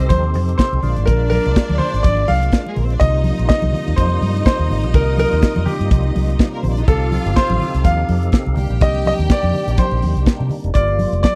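Sultry and glamorous, this short disco cut in C minor at 124 BPM with a light 16th-note swing sets a brilliant grand piano melody over a punchy modern drum kit, a round, foam-muted fingered electric bass, background congas, lush bowed strings that stop at 10.5 seconds, and fat, lightly overdriven tonewheel organ chords with key click, chorus vibrato and a slow rotary speaker, all captured in a dry, close 1970s-style studio sound as the harmony moves through F7, Bb7, Cm7 and Gm7.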